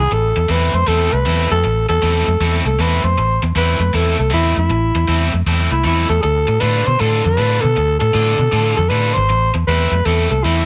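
Light reverb and small room ambience surround this brief cut from a longer piece. It is a brooding, mournful electric blues shuffle in A minor at 157 BPM, swung in 4/4. Up front, a tenor saxophone carries the melody in a jazz style, its breathy subtone tone turning raspy and growling, with vibrato, scooped notes and a soft attack. Beneath it, a vintage fingered electric bass, foam-muted and amped, sounds dark and round and sits equally forward. A cranked stack guitar plays a bright, picked, overdriven riff further back. The harmony rests on A minor, moves to D minor at 6.2 seconds and returns to A minor at 9.3 seconds.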